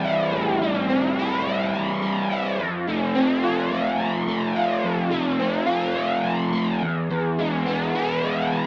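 In a light reverb with a digital sheen, this brief, mysterious and trippy rock fragment features a crunchy, overdriven, double-tracked electric guitar playing solo up front throughout, its picked notes coloured by flanger and slapback echo as it moves from Am7 to F at 2.6 seconds and to E at 6.8 seconds.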